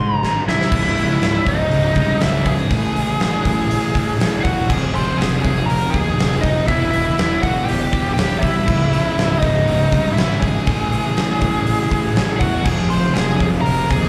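This dark, cathartic quiet-loud alternative rock excerpt in C# harmonic minor opens on a G# chord, where a biting, overdriven lead guitar, a growly fuzz bass and a faint, twangy clean guitar playing arpeggios sound together before a drum fill at 0.2 seconds. The twangy guitar drops out at 0.7 seconds, just as two thick fuzz guitars enter with a picked riff. One is warm and very quiet; the other, more brilliant and carrying distortion and slapback echo, is set in the background. From there the music moves at a straight 120 BPM in 4/4 through C#m, A5, Fm and Em, returning to C#m at 8.7 seconds for a second pass. The huge arena kit sits up front with a punchy kick, fat snare, brilliant crash and hi-hat, all in a pumping, hall-like space. The picked lead stays prominent throughout, its melody trailed by slapback and tape echo. The whole performance sounds like a live gig heard through the venue's PA in a small club, with small-room ambience and club reverb.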